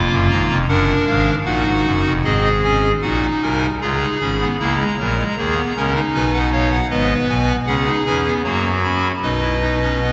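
A church acoustic with a long, wet reverb surrounds the sound, and the top end is soft and rounded. A solo pipe organ sits up front on a hollow clarinet reed stop with tremulant and baroque voicing, spanning F1 to D6 in a lively, elegant four-part fugue in 3/4 at 77 BPM, tuned to A4 = 436 Hz. Cut from a longer piece, the harmony moves through flat-side chords before settling into B major from 6.9 seconds.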